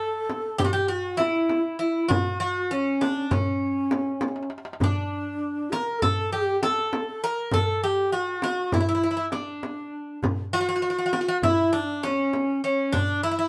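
A picked Greek bouzouki, metallic and up front with double strings, some doubled at the octave, carries the melody of this stately, warm Turkish makam piece in 9/8. A breathy, mellow low ney with soft attack and vibrato plays a second line beside it. At 0.3 seconds a crisp, deep metal-shell darbuka struck with hard hands and a small, bright frame drum enter, both close and dry, with a drum fill standing out at 4.2 seconds, while the band plays live in one room with moderate studio reverb.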